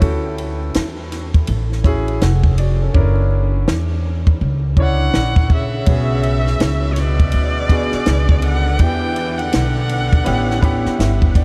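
A swung 16th-note groove at 82 BPM in 4/4 drives this nocturnal, smoky jazz-hop excerpt. A dry, compact cocktail kit sits up front with a tight kick, high-tuned snare and dark ride cymbal, and its hi-hats drop out between 2.9 and 5.9 seconds. A woody, thumpy pizzicato upright bass shares the foreground, while a warm concert grand with deep low end comps through Dmaj9, F#7b13, Bm69, Em9 and A9, then adds a fill at the close. At 4.8 seconds a distant bowed erhu enters with a smooth, clear melody full of vibrato and portamento, its line trailed by delay. Alongside it, a raspy, growling tenor saxophone plays a low second line with scooped notes and light vibrato. Vinyl crackle, light reverb and small-room ambience give the short cut a dusty late-night glow.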